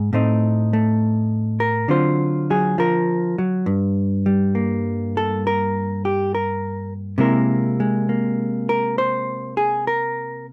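Sophisticated and swinging, this brief solo jazz excerpt features a lone clean, dark electric hollow-body guitar, picked up front in a dry, close 1970s-style studio sound with light reverb, moving through Adim, D7alt, Gm and Caug7 in a swung 4/4 over its 10.5 seconds.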